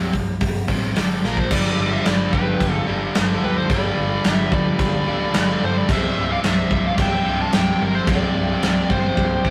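A rough rehearsal-room recording with light reverb captures this anthemic, swaggering hard rock passage in a straight 4/4. A bright, cranked stack guitar and a very quiet crunchy overdriven guitar play the riff over a round, hollow-body short-scale bass and a big, up-front acoustic drum kit with a punchy kick and rolled-off top, with drum fills at 1.2 and 9.2 seconds. From 1.2 seconds a dark, smooth overdriven lead guitar carries the melody while an octave-fuzz lead guitar adds a distorted second line in the background.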